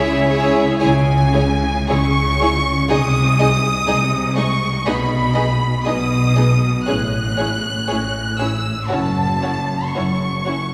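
A lush first violin section sings the yearning melody up front with a smooth top and steady vibrato, in a slow, melancholic classical movement for string orchestra that moves with a rubato 4/4 feel. Close behind, a rich second violin line joins a focused viola accompaniment set in the background, while bowed cellos and woody double basses anchor the bass beneath. All five sections play from the start in a reverberant concert hall heard from further back, and this short cut from a longer piece runs 10.7 seconds.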